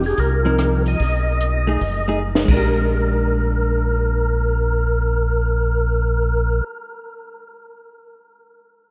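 Soul jazz organ trio in Bb mixolydian, swinging at 147 BPM in 4/4 with a soulful mood, heard in a short cut from a longer piece. A percussive tonewheel organ carries the melody with a fat, lightly overdriven tone, key click and second harmonic percussion, turning through a slow rotary speaker with chorus vibrato. Beneath it, a second tonewheel organ plays the bass line, round and dark through its own slow rotary speaker, sitting up front in the mix. A clean, compressed hollow-body electric guitar adds picked accompaniment. A compact cocktail kit with a high-tuned snare and punchy kick plays only until 2.6 seconds, ending on a fill that starts at 2.2 seconds. The organs and guitar carry on to the close of the clip, the organs stopping at 6.6 seconds and the guitar at 6.7 seconds. The whole trio sits in a vast, echoing cathedral-like space with a long reverb tail.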